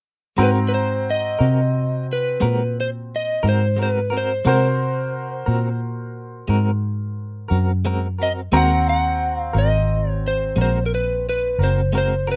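Up front, a slightly broken-up electric slide guitar played with fingerpicks carries the melody in this laid-back, soulful slow blues at 59 BPM in a straight 12/8 feel, sitting on an Ab9 chord in Ab mixolydian over a round, foam-muted vintage fingered electric bass, a brilliant, worn, woody and slightly detuned upright piano, and a dark, compressed clean electric guitar with tremolo, the mix dry with little reverb like a rough home demo in this short excerpt cut from a longer piece.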